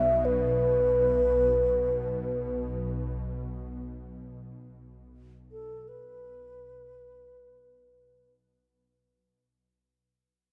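Meditative and haunting, this free-time world meditation piece sets a mellow low xiao, close-miked and up front, carrying a melody from A4 to E5 with vibrato and a crisp, breathy bamboo attack, its notes trailed by analog delay. Beneath it, an ethereal pad of detuned sawtooth with a noise layer holds a drone on B1, slow to bloom and long to release, softened by ensemble chorus and its own reverb. A plate reverb of 2.3 seconds gives the echo-heavy mix its spacious, floating air, and a fade-out runs across the whole of this short section cut from a longer piece.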